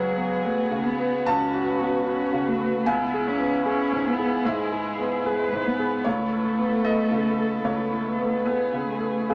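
A rubato 4/4 pulse carries this fragile, melancholic neoclassical fragment for piano and strings, where a mellow, intimate felt-muted upright piano sits up front in accompaniment, a con sordino cello carries the second line with light vibrato and portamento, a dark muted viola adds inner support, and a veiled chamber string section holds soft-attack sustained chords in the background, all within a small room's moderate reverb.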